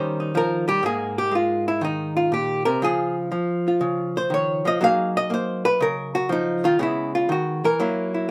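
A lone archtop guitar opens at 0.0 seconds on an Eb7 chord, picked with a clean, dark electric tone and placed up front in the mix. This is a short, playful, warm slice of solo jazz, cut from a longer piece, moving at 121 BPM in 4/4 with swung eighth notes. The hollow-body instrument is miked and amplified, and compression keeps its sound even as the playing spans from Ab2 up to F5. From 0.8 seconds, it moves through Absus2, Db and Gbmaj13 before turning toward Dbm9 and Gb7. A light reverb surrounds the guitar, which plays alone until the clip ends at 8.3 seconds.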